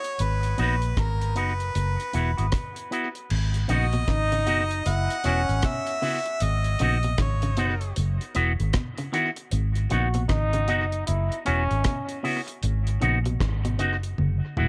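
Hypnotic and laid-back, this roots reggae excerpt opens with a clear, punchy harmonica carrying the melody with vibrato and scooped notes through tape echo until 7.9 seconds. Beneath it sit a dark, dry drum kit with a tight kick and its own tape echo, an amped, round, foam-muted electric bass up front, and a twangy, scooped envelope-filtered guitar, also echoed. From 3.7 seconds a vintage-toned trombone with light vibrato adds an echoed second line, while a hollow-body guitar picks bright arpeggios in the background, before a drum fill at 14.2 seconds closes the passage.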